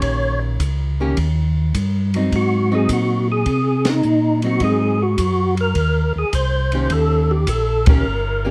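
A swung 4/4 groove carries this soulful, greasy soul jazz organ trio fragment, where a fat, lightly overdriven tonewheel organ with percussive third-harmonic attack, key click, chorus vibrato, slow rotary speaker and plate reverb sings the melody over Eb7 and Ab7 changes, a dark, clean hollow-body archtop guitar comps beneath it, a mellow, round second organ voice supplies the bass, and a compact, small-room cocktail kit with a high-tuned snare and punchy kick plays along as the band hits accents at 3.8 and 7.8 seconds, then drops out at 8.0 seconds.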